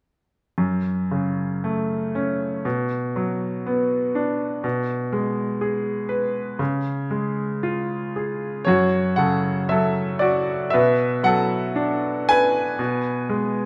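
Melancholic and wistful, this brief excerpt from a longer classical piece features a bright, brilliant concert grand piano, up front with deep bass, playing a lyrical solo in F# minor at a slow 59 BPM with free, rubato timing from 0.6 to 13.7 seconds, its chords moving from F# minor through B minor and G# minor over B to C# before a second section begins at 8.7 seconds, all set in a moderate recital hall reverb.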